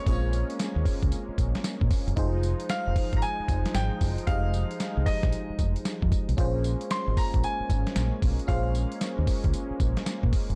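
A swung 16th-note groove at 114 BPM in 4/4 drives this bouncy, slick new jack swing excerpt in Bb dorian, where a gritty, compressed sampler-style drum kit with thumpy kick, snare, hi-hat and tambourine sits up front beside a round, deep dub fingered bass, while a glassy FM electric piano with chorus and phaser and a brassy, detuned sawtooth pad with chorus and vibrato hold the Bbm7 and Fm7 chords beneath a clear, polished concert grand piano melody touched with delay that stops at 9.0 seconds, all in a dark, dry production.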